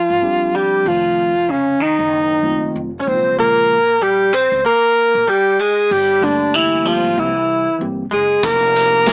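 A mellow alto saxophone sits up front in this nocturnal, cool jazz-hop excerpt, carrying the swung melody with vibrato, scooped notes and a smooth top. Beneath it, a clean, compressed semi-hollow guitar with ensemble chorus plays a second line, a woody, growly pizzicato upright bass holds the low end, and a tine electric piano with lush chorus accompanies until 8.0 s; a vintage drum kit with a punchy kick and a rolled-off top, playing hi-hat, kick, shaker and snare, arrives at 8.4 s. Light reverb and a small speaker sound tint the whole track as the harmony passes through Fsus2, Bbm7, Gm9 and C7.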